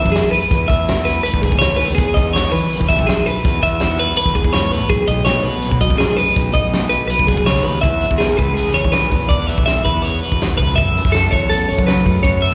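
A twelve-string electric guitar carries bright, twangy, clean picked arpeggios in its upper register, colored by spring reverb and a slapback echo, in this wistful yet bright math rock and midwest emo excerpt at 164 BPM in a straight 4/4. A second compressed twelve-string electric guitar plays lower accompaniment with analog chorus and its own slapback echo, moving through B7sus4/E, Emaj7 and B13 before the music settles into E major at 7.8 s, where the harmony moves from E to F#m7. Underneath, a fingered electric bass is pushed through overdrive into a dark, round, punchy fuzz tone. A loose indie drum kit enters at 0.1 s with a fat snare, a tight kick and hi-hat, its sound mid-forward with a rolled-off top. The whole performance comes across as a live gig heard through the venue's PA, bathed in recital hall reverb, with the instruments tuned slightly below standard pitch to A4 = 437 Hz.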